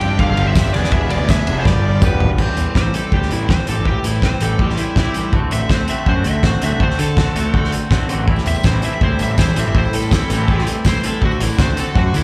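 Cool and moody, this indie rock excerpt at 163 BPM in A dorian, heard as a live gig through a club PA, sets a dark, fuzzy lead guitar soloing from 2.4 seconds over a twangy, double-tracked electric guitar riff, punchy overdriven bass and an up-front loose drum kit with a fat snare and a fill at 1.7 seconds, while a very quiet swirling phased string machine and a jingly tambourine return at 8.3 and 8.4 seconds respectively.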